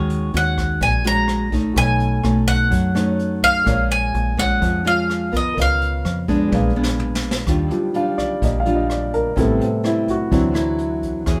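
Bossa nova at 126 BPM in 4/4, sunny and breezy, heard as a short cut from a longer piece played live by a band in one room with moderate studio ambience. A bright, picked bowl-back mandolin carries the melody up front until 6.3 seconds, over fingerpicked nylon-string guitar, an intimate grand piano with audible action noise, a dark, round, foam-muted fingered electric bass, and a jazz kit played with brushes, its snare tuned high and its kick punchy. After a drum fill from 6.5 seconds, the piano takes a solo from 7.5 seconds over the chords Ebmaj9, Am7 and D9.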